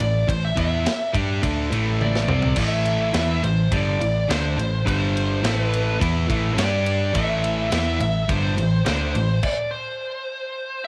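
Hard rock with a driving, heavy mood, recorded at home on cassette in a lightly reverberant space, built on an A minor riff that shifts briefly to G5 and back, shared by a cranked stack guitar and a sludgy distorted guitar, both overdriven and picked. Beneath them sit a dark, round, punchy hollow-body short-scale bass and a tight metal drum kit with a medium-tuned snare and rolled-off top, which drops in a fill at 2.0 seconds. Up front, a bluesy lead guitar carries a distorted melody with cassette tape and tape echo, ringing on past the band's stop at 9.4 seconds, with the drums trailing off at 9.6 seconds, until 10.9 seconds.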